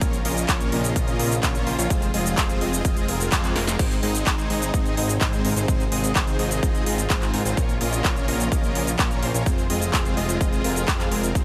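Anthemic and triumphant, this festival progressive house drop in Ab major at 127 BPM, cut from a longer piece, drives a huge, detuned supersaw riff with dub echo over a fat, nasal analog bass, an overdriven punchy kick, a big-room kit of crisp hats, handclaps, shaker, crash and snare, and dark bowed chamber strings in the background, all but the drums pumping with sidechain, moving through Bbm, Fm and Ab with a band accent at 3.3 seconds and a drum fill at 3.6 seconds under light digital reverb.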